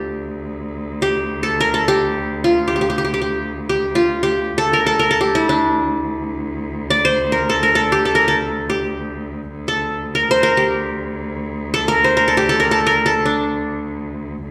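Unmeasured and in free time, this soulful, longing passage from a Turkish makam ensemble unfolds in makam Uşşak on D, tuned to A4 = 438 Hz, and is cut from a longer piece. The qanun carries the melody from start to finish, moving between D4 and D5 with a warm, plectrum-plucked, bright-edged sound from its triple strings, and it sits up front in the mix. Beneath it, a single bowed cello holds a low D2 drone throughout, rich and smooth with a gentle vibrato, an even tone and a smooth top, placed well behind the qanun. The two players were recorded live together in one room, and a large studio reverb with a 1.3-second decay wraps the ensemble in a wet, spacious ambience. The result is an intimate, searching meditation over a steady, resonant ground.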